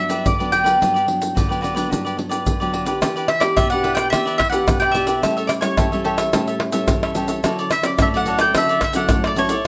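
Joyful and lively, this samba and choro excerpt moves at 108 BPM in 4/4, starting in G major over Gmaj7 and turning to E minor at 3.0 s through Em7, A7 and Dmaj9. A round, double-strung picked mandolin carries the melody with a touch of plate reverb, while a full-bodied, fingerpicked classical nylon-string guitar with audible finger squeak and a crisp, bright cavaquinho supply the accompaniment. Egg shaker, pandeiro, tamborim and a deep surdo sit close, dry and up front under soft hands, all heard in a moderately reverberant studio room.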